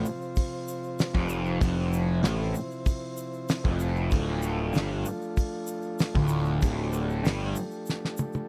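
A fuzz guitar riff, a fuzz-laden picked bass and an overdriven combo organ's sustained chords open this dark, hypnotic psychedelic rock fragment at 96 BPM in D minor. The double-tracked guitar sits up front, distorted and swept by a phaser, while the round, punchy bass adds low weight beneath it with dark overdrive. Behind them the vintage organ holds mellow chords with a light vibrato, moving from F5 to D minor at 4.1 seconds. A grainy, bright egg shaker ticks in the background, and a cloth-damped, thuddy kit of hi-hat, kick, snare and toms joins at 0.4 seconds, its fat snare and tight kick saturated with a rolled-off top. The guitar and bass stop at 7.5 seconds, and a short drum fill over the organ and shaker closes the passage in a dry, close 1970s-style studio sound with light reverb.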